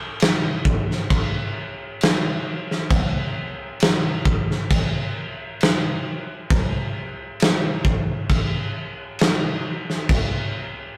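Ominous and hypnotic, this metal excerpt from a longer piece is a slow, straight 4/4 groove at 67 BPM carried entirely by a big acoustic rock drum kit, heard up front from 0.2 to 10.3 seconds with a dark, smooth big-room sound: a punchy kick, a medium-tuned snare and crash cymbal, all caught in a rough rehearsal-room recording with light reverb.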